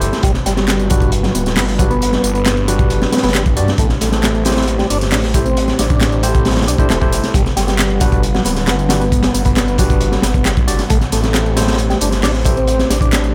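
A crunchy, saturated breakbeat kit with a punchy kick and high-tuned snare drives this raw, gritty 135 BPM breakbeat excerpt, layered with a house kit's handclaps, tambourine and hats over a thick, swirling phased saw bass, while an overdriven tonewheel organ riff with slow rotary speaker, barky tine electric piano stabs through delay, and a deep, moody analog pad pumping quietly in the background trace Gmaj7 and Am7 chords in a small room.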